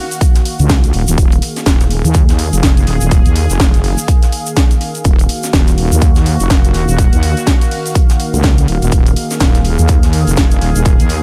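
A roomy studio reverb surrounds this gritty, bouncy bass house excerpt, where a punchy electronic kick and an overdriven house kit with a cracking snare drive a swung groove, a very quiet, dry reggae kit with a high-tuned snare and a grainy tube shaker add texture, a heavy, saturated sawtooth wobble bass pumps up front from 0.6 s, and a bright, detuned resonant pad with chorus sustains evolving chords throughout.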